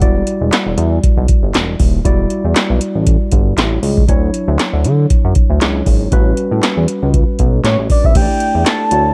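Funky and late-night, this early-eighties boogie funk fragment rides a swung groove from an electro analog drum machine, with a deep kick, punchy snare, handclaps, metallic hats and crash, alongside a glossy, nasal chorused synth bass sitting up front. A worn, slightly out-of-tune tine electric piano plays chords from Em9 through Dmaj9 to A13, set in a dark production with digital ambience. At 7.7 s a soft octave-layered synth lead enters, round and full with chorus, vibrato and slapback echo, shortly before the harmony settles on A7sus4 at 8.2 s.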